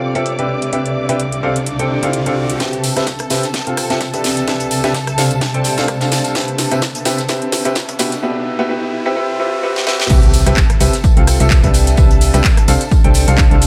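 In a small-room ambience, this joyful, uplifting piano house excerpt features a bright, woody upright piano riff pumping through dub echo and a filter sweep, while a muted, veiled violin section with vintage 12-bit grit holds sustained chords and a cloudy granular pad adds sustained texture. A house kit with cracking snare and metallic hats enters at 0.2 s as a riser and impact sit in the background, and at 2.6 s a punchy electronic kick, a very quiet dry soul kit and a faint tambourine arrive before a round FM bass lands on the drop at 10.1 s.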